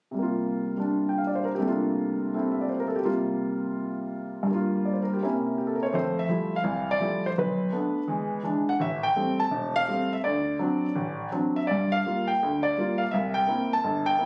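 A concert grand piano opens this short excerpt of solo jazz at 0.1 seconds, playing alone throughout in a relaxed, playful mood. The tempo sits at 167 BPM in 4/4 with a swung eighth-note feel, though the time is loosened by rubato. The piano sounds intimate and up front, with deep bass reaching down to E1, audible action noise and a natural tone, captured on a phone in the room with a light club reverb. The opening passage circles around C7sus4 and Gm11/C before turning through Gm7 and C7b9, and at 5.9 seconds the music settles onto Fmaj9 and moves into a second section. From there the harmony travels through Bm7, E7, Am7 and D7, landing on Gm7 and C7 as the piano stops at 14.3 seconds, cut from a longer piece.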